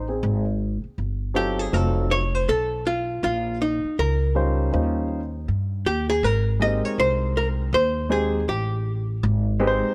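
Light small-room reverb and a dark, warm production frame this cool, relaxed jazz-hop excerpt at 80 BPM in Ab major with a swung 16th feel, where a mellow, deep-voiced concert grand piano comps and a woody pizzicato upright bass holds the low end from the start, before a clean, compressed hollow-body archtop guitar enters at 1.4 s with a picked solo over chords moving from Abmaj7 through F7b9, Bbm and Eb13 to Abmaj9.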